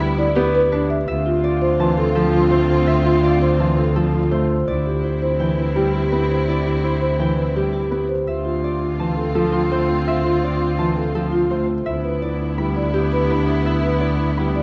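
A clear, intense bowed double bass on a low D anchors this urgent yet meditative minimalist classical pattern piece at 167 BPM in 5/4 and D dorian, where mellow soft-mallet marimba arpeggios, an intimate grand piano accompaniment with audible action noise, rich bowed strings with vibrato holding chords, a bright, ringing thumb-plucked Celtic harp melody and a dark, smooth clarinet second line in the background move through Em/D, Dm7 and Cmaj7/D inside a moderate scoring-stage reverb and a warm production, cut from a longer piece.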